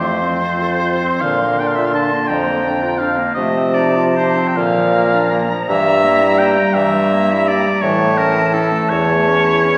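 A slow, rubato 6/8 pulse of roughly 48 to 58 dotted-quarter beats per minute carries this yearning, solemn classical movement for wind quintet, cut from a longer piece. The silver concert flute sings the melody high in its range with a pure, warm tone, soft attacks and vibrato. Beneath it, the oboe sits up front and shapes a second line with soft attacks and light vibrato. The bright, vintage-toned clarinet stays in the background as accompaniment alongside the mellow French horn, while the bassoon, also up front, anchors the bass with a clear voice and light vibrato. The harmony moves from F to Bb, through F7/C and Bb again, to Edim/G before arriving on A at 7.8 seconds. A generous scoring-stage reverb places the listener further back in the room, lending the quintet a spacious, romantic glow.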